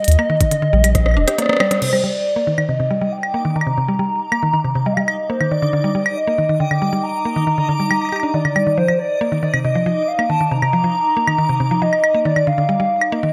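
IDM at 138 BPM in Eb major, intricate and glitchy, where a warbling, nostalgic lead with lush chorus and digital delay sings over a woody FM mallet pluck arpeggio, a glitchy overdriven drum kit of claves, crash, clicky hats and rim click, a deep round analog bass and soft electronic kick heard only in the opening seconds, a drum fill from 0.9 s and a band accent at 1.7 s, and from 2.8 s a reversed, dreamy granular texture, all set in bright 1980s-style digital production with plate reverb as a filter sweeps the arpeggio through the Cm7 to F7sus4 changes.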